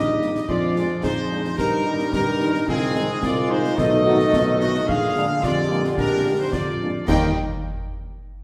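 A punchy, warm trumpet section carries the melody of this proud, rousing military-style march for wind band in 2/4, cut from a longer piece. Beneath it, a clear woodwind section, a dark euphonium and an airy, hollow small flute group add second lines, while a bright trombone section holds sustained chords, a mellow tuba anchors the bass, and a very quiet, close-miked French horn section joins at 0.2 s alongside concert snare drum, clash cymbals and concert bass drum, whose cymbals sound dark and whose drums stay close and dry. The trumpets, woodwinds, euphonium and tuba sit distant in a roomy recital hall with a wet reverb.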